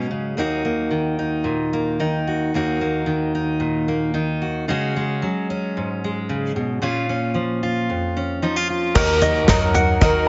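A bright, full-bodied fingerpicked steel-string acoustic guitar opens this stirring, bittersweet indie folk excerpt alone, its jumbo tone sitting up front with audible finger squeak as it moves through Eb minor, Dbsus4 and Bb minor chords at 112 BPM in a straight 4/4. At 8.9 seconds the arrangement builds: a clear, polished upright piano and a boxy, shimmering picked twelve-string guitar with old strings and octave-doubled courses enter, and from 9.0 seconds a light, thumb-plucked tenor ukulele adds arpeggios in a higher register. Underneath, a woody pizzicato upright bass with steel strings sits in the background, while an airy unplugged drum kit played with bundle sticks comes up front with a punchy kick, medium-tuned snare, toms and dark crash cymbals. A grainy, close egg shaker adds texture far back in the mix. Light reverb and small room ambience give the recording an intimate feel with a rounded top end, and the passage is cut from a longer piece.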